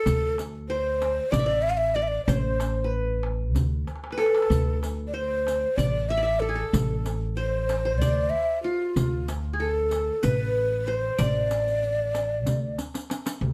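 A breathy, hollow ney carries the melody up front, its vibrato and crisp attack giving this melancholic, longing Turkish makam ensemble piece its voice. Set in D makam nikriz, it moves at 189 BPM counted in eighths through a straight 7/8. Beneath it, a bright-edged qanun plucks a second line on its triple strings, while a woody, thumpy upright bass anchors the low end up front. A clay-shelled darbuka played with soft hands and a close, dry riq with dark jingles fill out the rhythm, with drum fills arriving at 3.9 and 12.8 seconds. Light reverb surrounds the ensemble in this brief section cut from a longer piece.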